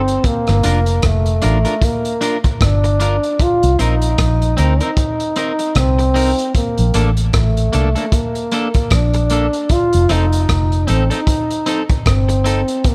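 A steady 4/4 pulse at 76 BPM with a 16th-note swing sets up this sunny, warm roots reggae excerpt, cut from a longer piece. A crunchy breakbeat drum kit, gritty and saturated with a tight kick and rolled-off top, sits up front with hi-hat, kick and rim click from 0.1 seconds. Beneath it, a vintage muted fingered electric bass gives a dark, round, punchy low end, foam-muted and amped, moving through a Gm7, Cm7, Bbmaj7 and F7 progression. A bright, twangy electric guitar at the edge of break-up adds picked, compressed accompaniment from 0.6 seconds, touched with tape echo and sitting lower in the mix. Over it all, a mellow trombone carries the solo melody with vibrato and tape echo, its tone roomy and distant yet still placed up front, under a light reverb.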